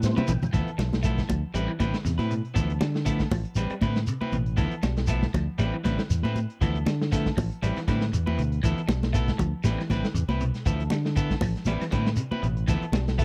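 A lightly swung afrobeat groove at 119 BPM in D dorian opens with a brief drum fill and a mellow, round tonewheel organ fill through a slow rotary speaker, the organ dropping out after 0.5 seconds. A muffled, lo-fi vintage kit, bright high-tuned congas and a grainy shekere drive the defiant, funky pulse beneath an up-front fingered electric bass, while from 0.2 seconds a clean, scooped semi-hollow guitar ripples arpeggios through lush chorus in the background and a slightly broken-up electric guitar punches stabs bathed in spring reverb. The harmony rocks steadily between Am9 and Dm69, and the dry, close 1970s-style studio sound keeps the whole ensemble tight in this fragment of a longer piece.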